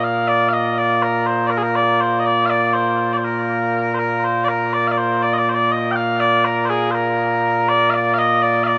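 Proud and ceremonial, this short cut from a longer piece of Scottish traditional pipe music moves in a steady 6/8 at 81 BPM in Bb major, with a single phrase stated twice, the repeat beginning at 4.7 seconds. Mellow small bagpipes play solo and up front from start to finish, their sweet, continuous tone carrying vibrato and touched with tape echo. A moderate, huge ambient reverb surrounds the pipes, lending the performance a spacious, stately air.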